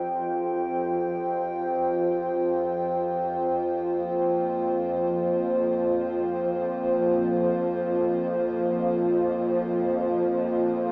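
Dark ambient drone in free time, this excerpt from a longer piece feels ominous and cavernous, hanging on a single Fsus2 chord for its full 10.9 seconds. A dark analog pad holds sustained chords from Bb3 up to G5, its detuned square and sawtooth tones thickened by a sub octave, a moving notch and a chorus that gives it a deep, moody cast. Beneath it, a bowed-like drone sits between F2 and F3, sounding string-like, tense and nasal, with a warbling vibrato, a noise layer and its own built-in reverb. Both parts are placed up front, swelling in on slow attacks and fading on long releases. An enormous, wet reverb with an 8.0-second decay fills the space, yet the overall sound has the boxy character of a small speaker.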